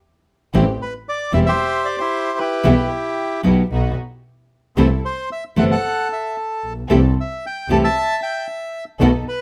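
In a lightly reverberant room, this sultry, tense tango at 114 BPM unfolds with a rubato feel in 4/4: a fingerpicked, bright nylon-string guitar and a biting, bowed double bass sit up front beneath a reedy bandoneon melody bathed in plate reverb, while a distant, lush symphonic string section adds dark stabs in the background over chords moving from Am7 through Em/B and B to C6.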